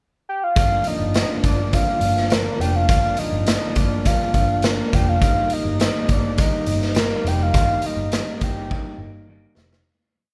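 Lightly reverberant and hazy, this short, mellow indie and bedroom-pop piece opens with a soft, octave-layered synth lead singing a chorus-tinged hook from 0.3 seconds, joined at 0.6 seconds by a slightly broken-up electric guitar strumming barre chords through a small old amp with vibrato, a round, foam-muted vintage picked bass, and a gritty, up-front garage drum kit with a punchy kick and dry backbeat, until a drum fill arrives at 8.7 seconds as the recording fades.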